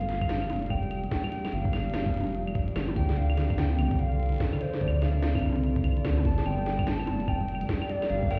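A swung sixteenth-note groove in 4/4 drives this short, glitchy and eerie IDM passage, cut from a longer piece, carried by an electronic kit of clicky hats, a tiny snare, claves and toms. Just after the start, a gritty, thumpy electronic kick arrives, overdriven and pitched up, and it stays until 8.3 seconds. Beneath it sits a round, deep analog bass, dark and up front, whose ring-modulated tone evolves as the harmony moves from Gm7 to Dm7 at 3.0 seconds and back. A tine-like FM pluck traces gentle arpeggios in a low register through chorus and tape echo, while a glassy, ethereal FM pad holds slow-blooming chords with ensemble chorus and sidechain pumping. Over the top, a warbling, nostalgic lead sings a mellow melody with vibrato and digital delay, and at 7.2 seconds a very quiet, pulsing gated texture joins on a single high note. The whole mix sounds muffled, as if heard through a wall from inside a stone room.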